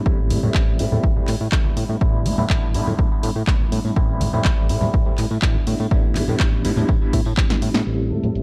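A straight 4/4 groove drives this groovy, funky filtered disco house excerpt, anchored by a punchy, tape-warm electronic kick up front and a house kit of handclaps, hats and a punchy snare, with ringing tambourine and hard-hand congas pumping in the background. A fat, detuned analog bass and a barky, overdriven tine electric piano with tremolo and phaser both pump beneath a filter sweep that runs until 7.9 s, moving between Am7 and Em7/A. A drum fill arrives at 7.5 s as the kick drops out, and at 7.9 s a very quiet, lush bowed string section enters, joined briefly by a clear, tight trumpet section roughened with vintage 12-bit sampler grit, all within a dark production and a light small-room reverb.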